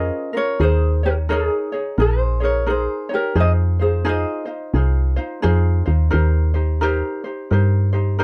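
Dry and close like a 1970s studio session, this short cut from a longer dreamy, languid Hawaiian piece in F minor swings gently at 87 BPM, with a light, thumb-plucked acoustic ukulele carrying the melody up front until 5.2 s, a second ukulele accompanying underneath through 8.2 s, and a woody, round FM bass sitting dark and prominent below as the harmony moves from Bbm7/F through Eb7sus4 and Fm7 to Cm7/Eb.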